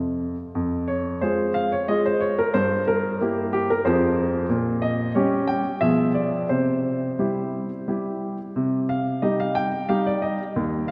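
A long, wet church reverb surrounds this short passage, which is cut from a longer piece and sounds as if it was recorded in a church or concert hall. It is a classical-period piano sonatina in F minor, moving at 90 BPM in 3/4 with a rubato feel that gives it a serious, elegant mood. A clear baby grand piano plays alone for the full 10.9 seconds, sitting up front with a polished tone and spanning from Eb2 to G5. After an opening F5, the harmony settles on F minor at 0.6 seconds and passes through diminished chords, including a Bdim7, before reaching C major at 6.5 seconds and closing on C minor.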